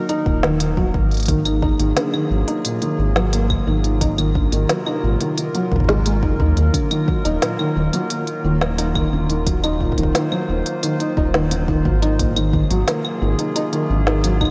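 A warbling, tape-like pad opens this intricate, cerebral IDM excerpt, its detuned square and triangle tones holding nostalgic, lo-fi chords with chorus, shimmer reverb and ring modulation. A felt-muted upright piano joins at once with soft, intimate arpeggios, its thick felt and audible action noise sitting up front beneath lush chorus, delay and shimmer reverb. An organic electronic drum kit of claves, smooth hi-hats and a woody snare arrives alongside it, and at 0.3 seconds a deep electronic kick and a round analog bass come in, the bass dark, sustained and forward with a fast attack. The harmony drifts between minor and extended chords in a straight, unhurried 4/4, giving the piece a thoughtful, inward pull. A lush hall reverb and bright 1980s-style digital production frame the whole arrangement.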